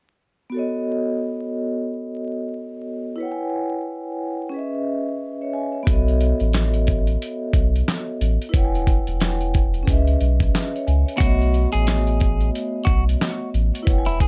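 A mellow vibraphone played with soft mallets opens this soulful, confident boom-bap hip-hop passage at 0.5 s, its ringing tones carrying a slow motor vibrato and a cassette-tape tint as it moves through B7, E6 and C#m7 chords over a bed of vinyl crackle. At 5.9 s a deep, round sub bass and a gritty, compressed sampler-style drum kit arrive up front with swung sixteenths, a thumpy kick, medium-tuned snare, handclaps and hi-hat that sound re-recorded in a small room. At 11.2 s a clean, picked electric guitar adds a quiet melody colored by phaser and analog delay, before this section of a longer piece cuts off.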